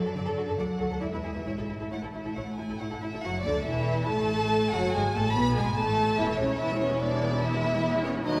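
A spirited, lively classical-period movement for string orchestra in A major at a quick 132-146 BPM with a rubato feel, cut from a longer piece, where a warm, intimate violin section carries the melody up front with light vibrato, a soft sul tasto attack and a second violin section adds a rich, expressive line, while a distant viola section fills in the accompaniment, a woody cello section sits in the background on the bass, and a dark double bass section anchors the low end with portamento and a soft attack, all heard from further back in a reverberant scoring stage.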